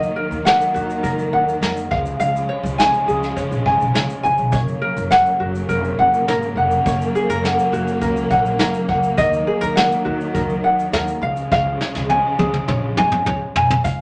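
A fingerpicked ukulele sits up front from the very start, light and close, joined at once by a distant, lush string section, a woody upright bass and a vintage brush drum kit in this heartfelt, carefree acoustic pop excerpt at 103 BPM in a straight 4/4. The ukulele carries the accompaniment in a warm upper register, while the bowed strings hold sustained chords underneath with expressive vibrato and portamento. The pizzicato bass, played on gut strings, adds a dark, thumpy foundation, and the drums use brushes, a punchy kick, a medium-tuned snare, shaker and toms with a rolled-off top and a small-room character. The harmony moves from D#m to C# and F#, returning to D#m and C#, and a drum fill arrives at 11.5 seconds and runs to 13.9 seconds, just as the strings stop at 13.8 seconds. A wet club reverb with a 0.8-second decay surrounds the mix, its highs gently capped above 10.5 kHz for a mellow sound.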